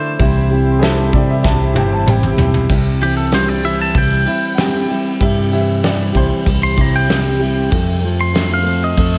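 Open-road and nostalgic, this folk rock and heartland rock cut opens with a very quiet, intimate baby grand piano and a reedy, close-miked accordion that both fall away by 2.7 seconds, while an up-front brush drum kit with a fat snare, a round hollow-body bass, a finger-squeaking steel-string acoustic guitar with slapback echo and a compressed mellow electric guitar riff carry on beneath a twangy electric guitar melody with analog delay that takes a clean solo from 2.7 seconds, as a woody upright piano adds a background second line through a lush hall reverb with a big arena sound.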